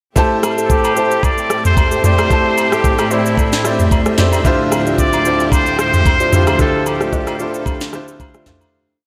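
A steady amapiano groove at 112 BPM in D minor, carried by an up-front electronic drum kit with a knocking kick, sharp snare and syncopated rim, underpins this late-night, deep piece, where a brilliant grand piano plays rhythmic spread chords with audible action noise, a lush bowed string section holds sustained chords, saturated agogo bells and woodblock tap a background timeline, a nasal, breathy straight-muted trumpet with tape echo states motif-based call phrases from 0.6 s, and a flute-like tonewheel organ adds short syncopated stabs through chorus vibrato and a stopped rotary speaker, all moving from Am7 to Dm11 in a dreamy, reverb-soaked mix that fades out from 6.6 s.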